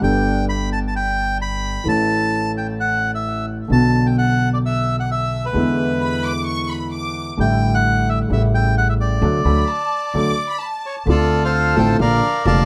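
Tango in D major at 130 BPM with a rubato feel, passionate and playful, cut from a longer piece. A reedy, dark bandoneon carries the melody up front with tape echo, over an intimate concert grand piano with deep bass and audible action noise, while a woody, growly pizzicato upright bass holds the low end. At 6.0 seconds a distant, lush bowed violin section adds a second line with expressive vibrato, and the band hits an accent from 9.2 to 11.1 seconds, all in a moderate studio ambience.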